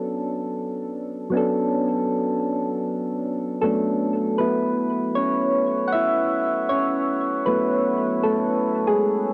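Melancholic and hazy, this short cut from a longer hip hop piece at 78 BPM in F# minor, with a swung 16th-note feel, features solo soft electric-piano-like synth keys, round and mellow with a chorused shimmer, a filter sweep, cassette-tape grain and tape echo, moving from Bm7 to F#m7 at 4.4 seconds in a damp small room on a homemade cassette recording.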